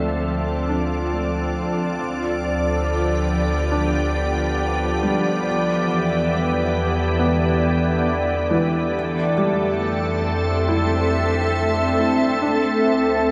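A bright, detuned organ-like pad sits up front with sustained chords moving from Dm7 through Em7 and Fmaj7 in this melancholic, serene ambient piece at 69 BPM in D dorian, while a felt-muted upright piano plays intimate arpeggios with audible action noise and analog delay in the background, a deep, ominous rumbling drone carries the bass, and a reedy, breathing hand-pumped harmonium holds a drone, all bathed in a huge 8-second reverb that gives the mix a dreamy, soaked quality.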